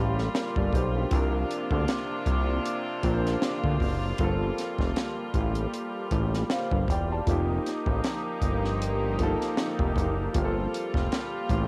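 Cut from a longer piece and captured as a cassette home recording in a small room with light reverb, this late-night, soulful neo-soul R&B groove in G minor at 78 BPM sets an open, long-sustaining baby grand piano and distant, floating bowed strings over a fat, detuned sawtooth analog bass with a filter sweep, while a dry, punchy cocktail drum kit with a high-tuned snare and hi-hat joins up front at 0.2 seconds, swinging gently on the sixteenths through Gm11, C9sus4 and F9sus4 chords.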